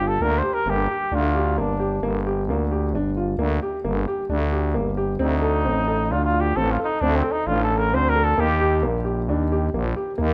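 Urgent yet pensive, this fragment of contemporary chamber music moves in an uneven 7/4 at 133 BPM: an up-front, vibrato-rich flugelhorn sings the melody until 8.8 s over dusky, worn arpeggios from a boxy baby grand with audible action noise and a thick, growling FM bass, all set in a moderate recital-hall reverb as the harmony passes from Gm toward Eb.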